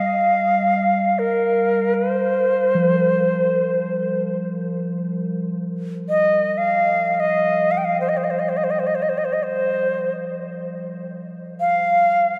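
An airy, woody Native American-style cedar flute carries the melody up front, close-miked with soft attacks, vibrato and a touch of tape echo, while a metallic bronze singing bowl sounded with a suede striker rings beneath it with slow beating and a vintage, band-limited tone until it stops at 10.0 seconds, the two set in free time within a vast, echoing cathedral reverb in this meditative, spacious piece of world meditation music, tuned to A4 = 439 Hz and cut from a longer work.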